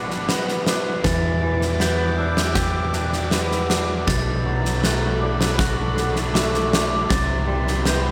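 Cinematic and brooding, this post-rock passage in E minor at 79 BPM, cut from a longer piece, sets a twangy, clean electric guitar arpeggiating through chorus, delay and slapback echo over smooth, bowed strings sustaining chords in the background and a huge arena drum kit with a punchy kick and fat snare up front, before a bell-like glockenspiel struck with soft plastic mallets and a growling, overdriven fingered bass join at 1.0 seconds, moving through Gmaj7, Em7, Bm7 and Cmaj7 inside a lush hall reverb that gives a big arena sound.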